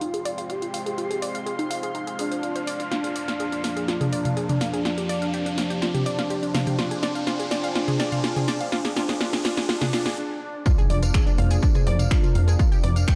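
A smooth, expressive sawtooth lead with vibrato and portamento carries the melody in this cinematic, hypnotic melodic techno excerpt in F dorian at 124 BPM, shimmering with ensemble chorus and digital delay over a lush, detuned unison pluck arpeggio with dub echo, a moody analog pad roughened by 12-bit sampler grit, and a deep ambient pad tinged with ring modulation. An overdriven techno kit of finger snaps, hi-hat, rim clicks, punchy snare and toms builds through a drum fill as a riser climbs and filter sweeps move across the pluck arpeggio and analog pad, ending in a brief break at 10.2 s. The drop lands at 10.7 s with an impact, a heavy, up-front overdriven kick and a jingly tambourine, and at 10.9 s a punchy, funky wave-folded bass on F1 joins the sidechain-pumping synths inside a dark hall-reverb ambience.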